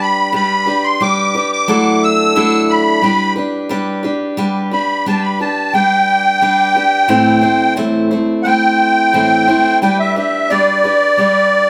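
Hopeful and open-road in spirit, this short rock excerpt moves at a steady 88 BPM in straight 4/4, set in G major and tuned slightly below standard pitch. A musette accordion carries the melody throughout, its reedy, shimmering wet tuning sitting up front and ranging from D5 to E6. Beneath it, a picked steel-string acoustic guitar provides the accompaniment from start to finish, its tone warm with an auditorium-like body, also placed up front. The harmony rests mostly on G, passing through Dadd9/F# early on and moving to A minor at 7.1 seconds before returning to G. At 4.4 seconds the accordion steps into a solo that carries through to the end, while the pair plays together live in one room, bathed in a moderate large-studio reverb.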